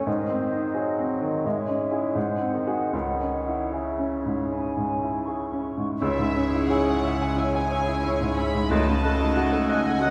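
Lush and passionate, this classical excerpt in C# minor moves with a rubato 4/4 feel between 74 and 92 BPM, cut from a longer piece. A clear, open baby grand piano carries the melody up front, joined from the start by a very quiet, mellow solo clarinet and a large flute ensemble with a pure, straight tone in the background, while a bassoon with light vibrato and a smooth top supports them from further back. At 6.0 seconds the orchestra blooms in: symphonic violin sections played sul tasto with a soft attack and floating purity take up both melody and second line, a dark, woody viola section adds very quiet vibrato-rich accompaniment, and cellos and double basses anchor the bass on C#. Very quiet French horns and a present trombone section with light vibrato hold sustained chords beneath. The harmony circles G#, C#m/G#, G#7 and C#m before shifting to D#m7b5/C# near the close, all bathed in a generous scoring-stage reverb that suggests a church or concert hall.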